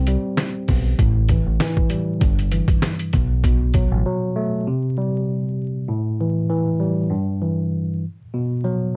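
Dry, gritty and dusted with vinyl crackle in a light reverb, this moody, dark boom-bap hip-hop fragment at 98 BPM, with a light 16th-note swing, sets a worn, slightly out-of-tune, lightly overdriven tine electric piano heard through built-in speakers against a round, deep fingered dub bass and a compressed, pitched-down 12-bit sampler kit of thumpy kick, medium-tuned snare and hi-hat, until bass and drums fall away by 4.0 seconds and the mellow electric piano carries on alone to 9.0 seconds.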